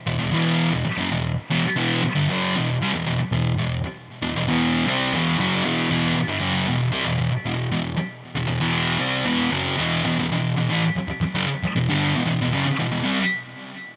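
A straight 4/4 rock groove carries this swaggering, raw fragment of a longer piece, where a thick, double-tracked fuzz electric guitar takes the solo up front from 0.1 to 13.2 seconds, its picked, distorted tone trailed by tape echo in a lightly reverberant room as it moves from an E5 power chord to E minor at 10.1 seconds.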